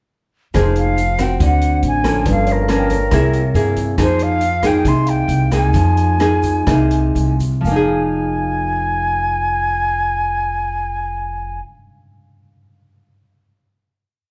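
A smooth, wistful bossa nova piece opens at 0.5 s with full-bodied, fingerpicked nylon-string guitar playing thumb bass and syncopated plucked chords, woody pizzicato upright bass in a root-and-fifth two-feel, a distant, roomy drum kit with punchy kick, hi-hat and rim click in a soft groove, and a grainy egg shaker in the background, as an airy silver concert flute with vibrato and plate reverb carries motif-based phrases up front and a clean tine electric piano scatters notes behind, the music slowing from 4.0 s into a final chord at 7.6 s.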